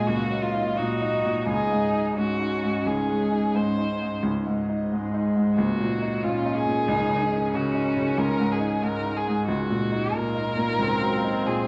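Intimate and hopeful, this short neoclassical excerpt in Db major drifts at a rubato 83-93 BPM. A veiled, con sordino violin sings the melody with vibrato while a muted, dark cello traces a second line, a bright, woody upright piano sits up front in accompaniment, and a very quiet, ethereal pad holds airy chords, all ringing in a large, wet room over chords that keep returning to a Db bass.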